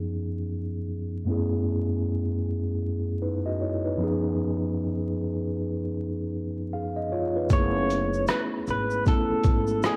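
A hazy home recording on cassette, dusted with vinyl crackle and light reverb, opens this short cut from a longer lo-fi hip hop piece at 77 BPM in F# dorian, with a swung 16th-note feel. For the first 7.5 seconds a mellow tine electric piano plays alone, up front through its built-in speakers. Its clean tone runs through cassette tape and a low-pass filter with a filter sweep, moving between C#9/F# and F#m11. At 7.5 seconds a boom bap sampler-style kit arrives with gritty 12-bit character, a thumpy kick, hi-hat, rim click and shaker, compressed and up front as if re-recorded in a large room. A pizzicato upright bass adds woody, growly low notes beneath, while a faint tube shaker sits grainy and bright in the background. Over the top, an electric guitar through a small old amp plays a fingered, slightly broken-up melody with tremolo, giving the reflective mood a worn edge.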